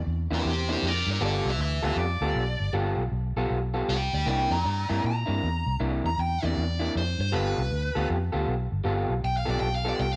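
A dark, round, foam-muted electric bass opens this laid-back, swaggering electric blues shuffle, joined at 0.3 seconds by two electric guitars. The groove moves at 157 BPM in 4/4 with a swung eighth-note feel, sitting in G mixolydian as the harmony shifts between C9 and G9 chords. The overdriven electric guitar carries the melody high in its register, its warm, picked tone colored by a phaser. Beneath it, a picked electric guitar through a small old amp plays a riff with a lo-fi, slightly broken-up sound and a vibrato effect. All three parts sit up front under a light reverb, and the passage is cut from a longer piece, ending around 10.2 seconds.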